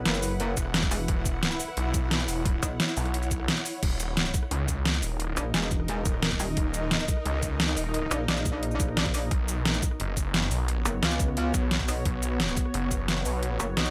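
Mechanical and aggressive, this cut from a longer dark technical drum and bass track drives at 175 BPM in a straight 4/4, centered on Eb phrygian. A snarling distorted saw bass growls up front with detuned, tube-saturated grit and a resonant moving notch, pumping against the sidechain, while a metallic wobble bass adds a chorused, FM-edged wobble that drops out briefly before returning at 5.4 seconds. The dubstep drum kit sits forward with a deep snare, bright hats, rim clicks, shaker and crashes, pushed through overdrive, and an electronic kick adds a driven, knocking thump from 0.6 seconds. Behind them, a swarming, granular drone holds tense sustained chords with a slow attack and its own reverb, ducking in time with the sidechain. The harmony shifts from E5 to Eb5 at 3.8 seconds and later to B5, all set in a light reverb.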